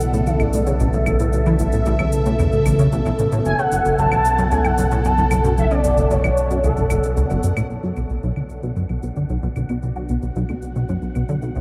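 Hypnotic and mysterious, this ambient, sequencer-driven space music moves at 113 BPM in B minor, with a punchy, funky plucky analog bass riff with ring modulation, ensemble chorus and analog delay up front; a swirling, detuned phased analog pad holding sustained chords; a round sine sub bass; electronic shaker and claves through analog delay; a smooth sawtooth synth lead with vibrato, cassette tape and ensemble chorus carrying the melody until 7.4 s; and an airy, breathy wind-like tuned noise texture appearing faintly in the background from 8.3 s, all set inside a huge, dark reverb space.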